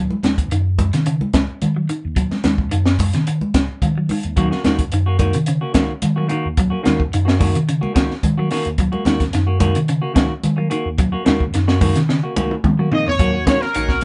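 Captured live in one room with light reverb and a top end capped at 10.5 kHz, this hypnotic, defiant afrobeat excerpt at 109 BPM in Eb minor sets dark, clean electric-guitar arpeggios over a round, punchy hollow-body bass, bright thin-skinned congas and an up-front cocktail drum kit with a high-tuned snare. A warm semi-hollow guitar adds stabs from 4.4 s, and a drum fill arrives at 12.1 s. A clear, lightly vibrato horn section then takes the melody at 12.9 s, just before a shouting, lightly overdriven tonewheel organ on slow rotary speaker slips in at the very end.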